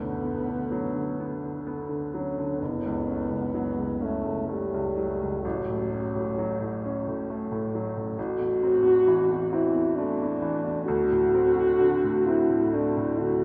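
A mellow French horn carries the melody in this yearning, elegiac romantic classical duo, its tone touched with light vibrato and a distant, roomy quality even as it sits up front. Beneath it, a clear baby grand piano supplies the accompaniment with a natural sound and long sustain, reaching down into its low register. The tempo is slow, around 65 BPM in 3/4, with uneven beats and a free rubato feel that lets the phrases breathe. The harmony drifts from Bm/D through F#m and Am before settling on D7 near 10.9 seconds, leaving the music poised as this short passage, cut from a longer piece, ends at 13.4 seconds. Both instruments are bathed in a wet cathedral reverb with a long decay, giving the duo the spacious air of a church or concert hall.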